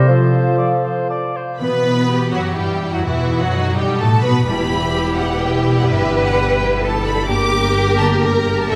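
A fast, straight triple metre at 127 BPM drives this stormy, dramatic romantic orchestral passage in E minor, cut from a longer piece. In the opening 1.6 seconds a clear solo clarinet, a mellow, distant cor anglais and a pure, straight-toned flute ensemble trace brief second lines, while a roomy bassoon and a dark, soft-attacked French horn section sit in the background beside a ringing, fingerpicked concert harp that arpeggiates throughout. At 1.6 seconds the strings take over: a lush symphonic violin section with smooth, even vibrato carries the high melody, a focused studio violin section adds a second line beneath it, and an intense viola section and a deep double bass section fill the accompaniment and bass. A clear, bowed cello section joins at 2.1 seconds, its line sitting unusually high for a bass part. The harmony moves from F through Em/B, B7 and Em to Em/G before turning to a darkening Gm, all set in a reverberant recital hall with a generous, lingering tail.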